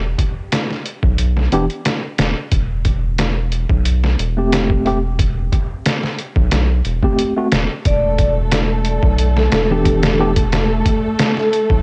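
Worn, warbling cassette tape and light digital ambience colour this smoky, hypnotic trip hop excerpt at 90 BPM in E minor, where a round, wave-folded analog bass with tube saturation and an overdriven, muffled sampler-style drum kit with a thumpy kick sit up front, a clean tine electric piano through a combo amp adds medium tremolo and tape echo from 1.5 seconds, and at 7.9 seconds a close-miked soft-mallet vibraphone takes the melody over a lush, bowed dark string section with 12-bit sampler grit as the harmony moves from Am7/E to Em7.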